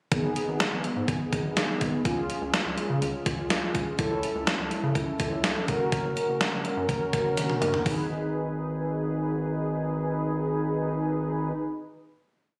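A driving, cool synth-pop piece opens with a clean 12-bit drum machine's thumpy kick and medium-tuned snare, a rubbery, hollow square-wave bass and mellow, brassy synth chords with chorus, all heard through a phone in a room with moderate digital reverb, until a drum fill at 7.4 seconds brings the drums to a stop at 8.0 seconds and the bass and synth brass hold a final chord.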